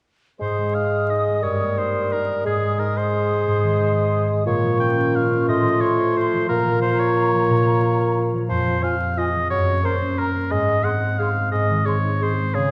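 A dark, crackling vinyl-style sound sits inside a wet concert hall, framing this festive, elegant orchestral ballroom waltz in Ab major at 178 BPM, its 3/4 pulse stretched by rubato and uneven beats. An up-front concert harp rings out fingerpicked arpeggios while a mellow, punchy bassoon with light vibrato supplies the accompaniment. A smooth-topped solo oboe sits forward among the second lines, joined by a bright clarinet and an airy, expressive flute ensemble tongued with vibrato in the background, all entering at 0.4 seconds in this fragment cut from a longer piece.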